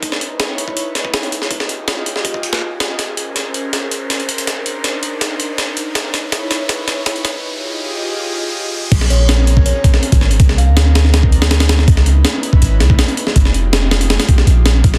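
An airy, breathy pad with chorus and 12-bit sampler grit sustains minor ninth chords over gritty, compressed breakbeat drums with a thumpy kick and high-tuned snare, while an electronic riser in the background and a drum fill build toward the drop at 8.9 seconds, where a deep, boomy 808-style bass comes in up front and a woody kalimba with dub echo rings briefly in the background, giving this dense, dry drum and bass and jungle excerpt a nostalgic, atmospheric feel.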